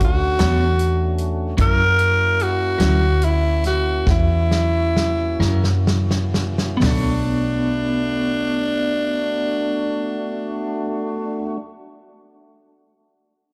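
A raspy, growling tenor saxophone leads this smoky, brooding slow blues in B minor, carrying the melody up front with a slapback echo over a 12/8 pulse of 41-51 BPM in dotted quarters that slows down through the opening 6.8 seconds. A round, foam-muted electric bass and a natural drum kit with a fat snare and punchy kick sit close beneath it, while a lightly overdriven tonewheel organ holds sustained chords with key click, chorus vibrato and a slow rotary speaker, and a clean, compressed electric guitar with tremolo and slapback echo picks quietly in the background from 0.4 seconds. The harmony moves from Bm9 to F#7 and back to Bm9, a drum fill starts at 4.1 seconds before the drums stop at 7.0, and the whole fragment, cut from a longer piece, sounds like a live gig heard through the venue's PA with club reverb.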